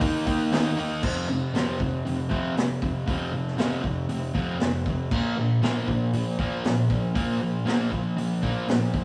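A double-tracked fuzz guitar and a vintage acoustic drum kit kick off this gritty, swaggering garage rock excerpt together at 118 BPM in a straight 4/4, the distorted guitar riff sitting up front while the drums bring a punchy kick, a high-tuned snare, hi-hat and crash with a rolled-off top. The riff moves from an Eb5 chord to F5 at 1.0 seconds, then to Bb5 at 5.1 seconds. The band sounds like it is playing live in one room, with a moderate stone reverb and a small room ambience around the sound.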